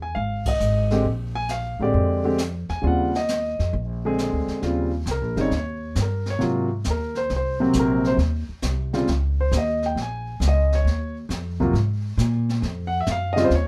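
A relaxed, sophisticated jazz piano trio swings at 135 BPM in Eb mixolydian, with the concert grand and pizzicato upright bass up front from the start and the brushed drum kit entering at 0.2 seconds, sitting distant and roomy with a high-tuned snare and boomy kick. The piano sounds intimate and vintage, with deep bass and audible action noise, while the bass is woody with steel strings, all in a light reverb. After a band accent at 0.4 seconds, the piano takes a solo from 4.6 seconds over chords moving from Eb13 through Ab9 to Bbm7 and Ab7sus2 as this excerpt from a longer piece closes.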